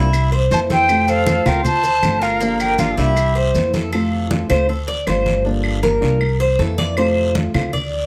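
A sunny, danceable Cuban son and guajira groove in straight 4/4 at 158 BPM drives this excerpt: low-tuned congas with a thick skin pulse alongside a raspy, band-limited guiro, while woody claves sit distant in the background and grainy, mellow maracas add a vintage shimmer until 3.9 seconds. Up front, a pizzicato upright bass with steel strings gives a woody foundation, and a dark, thumb-plucked flamenco guitar supplies accompaniment. The Cuban tres plays metallic, picked arpeggios on double strings, some doubled at the octave, cycling through F major changes built on C7, F, Dm7 and Gm7. From 0.5 seconds an airy, expressive concert flute carries the melody with vibrato and tongued notes from a distance, supported by a clear, punchy trumpet second line that ends at 3.5 seconds. The tres then takes a solo through the second half, all captured with close, detailed microphones and light reverb in this excerpt from a longer piece.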